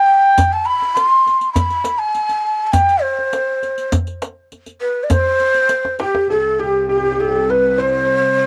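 This Persian modal ensemble piece, cut from a longer work, moves at 101 BPM in a straight 4/4 with a longing, melancholic mood, tuned slightly high to A4 = 443 Hz. A breathy, end-blown ney carries the melody throughout, its reed-cane tone straight and tongued, sounding distant and a little unsteady yet placed up front. Beneath it, a deep tombak and a riq with dark jingles struck by hard hands sit close and dry, and a drum fill near 5.7 seconds closes the opening section before the hand drums give way. A felt-muted upright piano enters at 6.0 seconds with a soft, mellow second line in the background, its thin felt and audible action noise lending an intimate feel. A bright studio cello section follows at 6.3 seconds, holding an intense, closely captured bowed drone with light vibrato. The ney, piano and cellos share a cassette-tape grain and plate reverb, and the whole sits in a wet booth ambience, captured as a home cassette recording.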